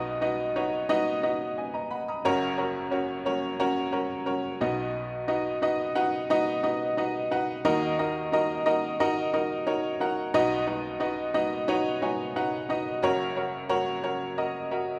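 A large, wet studio reverb surrounds this live-in-one-room recording, and the upright piano sits up front, its tone bright, woody and slightly detuned with a worn character. It's a short cut from a longer pop piece in B major, moving at 89 BPM in a straight 4/4, and the mood is anthemic and uplifting. The piano carries everything as the solo part, spanning from F#1 up to D#6 and moving through B, F#, B, D#m and back to B. Near the end it plays a fill from 11.7 to 13.0 seconds, leading into a new section that lands on F# and runs to 15.0 seconds.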